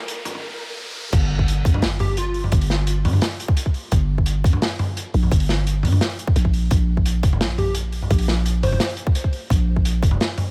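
A growling, buzzy 808-style bass drives this tense, dark half-time drum and bass at 172 BPM, arriving at 1.1 seconds with a tight, layered electronic kick under a gritty, saturated breakbeat kit with dark cymbals, while a background riser and impact open the cut and a bright, detuned plucky unison lead with cassette tape and digital delay surfaces briefly, returning at 7.6 seconds.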